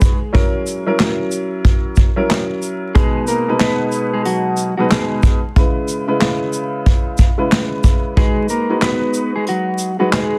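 A swung 92 BPM boom-bap hip-hop groove from a punchy, up-front vintage brush kit of kick, snare, hi-hat, handclaps and shaker sets a tough, moody tone, as a woody, slightly detuned upright piano with audible action noise and cassette-tape coloring moves through F#7, B6, C#m7 and G#m7, and a clean, fingered electric guitar melody with tape echo enters at 2.9 seconds, all under light reverb and vinyl crackle in a dense, heavily limited master of this brief excerpt from a longer piece.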